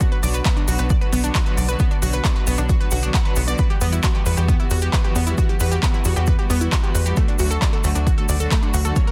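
Euphoric and emotional, this uplifting trance passage, cut from a longer piece, pairs a lush, detuned unison pluck playing bright arpeggios with delay over distant, bowed studio strings holding sustained chords, both pumping with sidechain alongside a tight sawtooth sequencer bass that enters at 0.2 seconds, while a punchy, overdriven electronic kick sits up front, a layered big-room kit adds crisp hats and handclaps, and a grainy cabasa rests in the background, all in a dense, heavily limited modern mix with little reverb as the chords move from Bm to Emadd9 to D.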